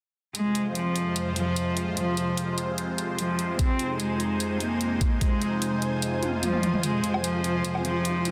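A dense, heavily limited mix in a lush digital hall carries this aggressive, heavy wobble dubstep excerpt at 148 BPM in a half-time F minor feel, where a nasal, boxy bowed cello with light vibrato and tape echo sings the melody over a bright, detuned sawtooth supersaw pad that pumps with sidechain and sweeps through a phaser, and an overdriven dubstep kit of hi-hat, toms and woodblock, while a cloudy granular pad blurs into the background from 2.0 seconds, a knocking, overdriven electronic kick punches up front from 3.6 seconds, and a very quiet swell and riser arrive at 6.2 seconds alongside a drum fill before the build-up.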